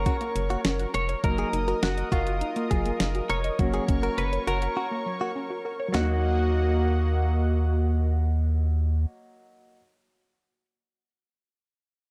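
A rubbery, bouncy square-wave bass sits up front in this melancholic, cool synth-pop excerpt in Eb minor at 102 BPM, joined by a thumpy, fat-snared 12-bit drum machine with handclaps and hi-hat that plays until 6.1 seconds, around a break from 4.8 to 5.9 seconds. A fingered semi-hollow electric guitar carries the melody through analog chorus and delay, over a brassy, warbling analog pad with chorus and vibrato. In the background sit a clear concert grand piano, a direct-recorded picked clean guitar second line with delay, and nasal pluck arpeggios with chorus, phaser and delay, all moving from Gb toward Ebm in a dark production with a lush hall reverb.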